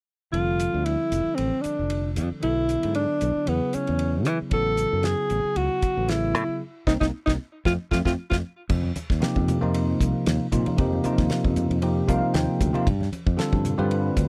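Funky, slick electric jazz fusion at 115 BPM in 4/4 with a light sixteenth-note swing, this dry, close 1970s-style studio excerpt opens on extended chords such as F69 and Bm7. An up-front alto saxophone with light vibrato and scooped notes carries the melody until 8.4 seconds over bell-like tine electric piano with analog chorus, a growly fingered electric bass, and a damped 70s drum kit with a fat snare, tight kick and dark cymbals. After a band accent ends the opening section, very quiet ringing congas enter at 8.7 seconds beneath suspended chords, and the electric piano plays a fill at 11.8 seconds.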